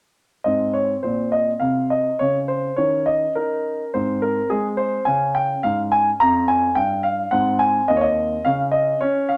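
A rubato 4/4 at 105 BPM carries this playful, elegant classical-period piano sonatina fragment in Ab major, where a polished, present grand piano plays solo and up front from 0.4 to 9.4 seconds, ranging from Eb2 to Bb5 over harmony moving from Ab through Eb5 and Db back to Ab, all set in a moderate studio reverb.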